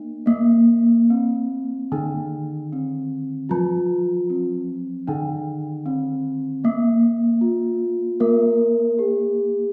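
A reverberant church or concert-hall sound surrounds this brief gamelan excerpt in Bb slendro, serene and unhurried at 77 BPM in a straight 4/4. Up front, one bronze metallophone carries the melody between Bb3 and Bb4, its ringing tone mellow and soft under padded disc mallets. A second, slightly quieter metallophone struck with a wooden mallet plays the accompaniment beneath it, its paired tuning producing shimmering beats, and both play throughout as the passage moves into a new section at 3.5 seconds.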